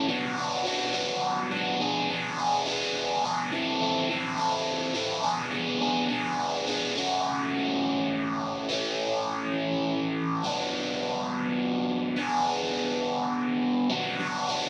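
Moving in 6/8 at 69 dotted-quarter beats per minute with a straight feel, this rock excerpt cut from a longer piece pairs an upbeat drive with a wistful edge, carried entirely by a solo overdriven electric guitar that plays from 0.0 to 14.7 seconds between E3 and A4. The guitar is bright, picked, double-tracked and compressed, sitting up front with a phaser colouring its tone as it moves through Bm, Bm6 and Am before a second section at 7.0 seconds shifts to F#m, A and back to Bm. A moderate stone-room reverb gives the live, single-room performance a natural sense of space.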